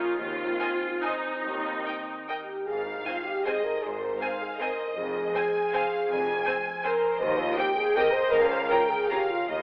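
Classical orchestral ballroom waltz in Ab major and 3/4, elegant and sweeping with a rubato pulse around 136-175 BPM, where a mellow French horn section up front holds sustained chords over viola accompaniment, background harp arpeggios and a cello and double bass foundation entering at 0.2 seconds, while a rich violin section carries the melody in the background and a clear, intense violin section adds a second line from 0.6 seconds, all set in a wet scoring-stage reverb with a telephone-like tone in this brief cut from a longer piece.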